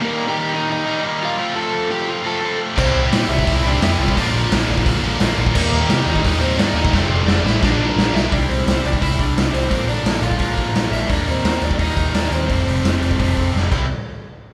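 A straight 4/4 pulse at 173 BPM drives this rebellious, upbeat punk rock excerpt, where a double-tracked, up-front overdriven guitar riff and a hollow-body semi-hollow guitar melody open together before a raw garage drum kit with a gritty, saturated sound and tight kick, a growly, punchy picked electric bass and a background high-gain guitar riff join at 2.8 s, the heavy guitar dropping out at 8.3 s as the band, playing live in one room with light reverb, cycles through Eb, F, C and Bb chords punctuated by drum fills.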